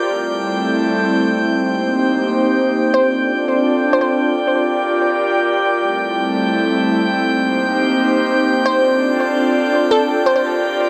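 A breathy chorused pad, up front and sustaining minor-seventh chords, opens this raw, atmospheric drum and bass excerpt in free time, joined from the first moment by a calm, drifting glass-harmonics texture of sine overtones floating above it. A crystalline wavetable pluck with dub echo plays a short melody at 2.9 and again at 8.7 seconds, all within an echo-heavy mix steeped in a wet spring reverb.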